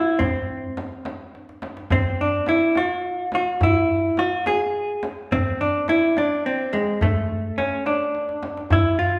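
Persian modal ensemble music in A avaz esfahan, moving at 71 BPM in a straight 6/8 with a longing, hypnotic mood, in a short fragment cut from a longer piece. A dark, clean, compressed hollow-body electric jazz guitar carries the picked melody up front between G#3 and G#4. Underneath, a close frame drum and a deep tombak played with soft hands set in a warm pulse, the tombak sitting in the background, with drum fills at 1.3 and 8.1 seconds, all bathed in the wet reverb of a recital hall.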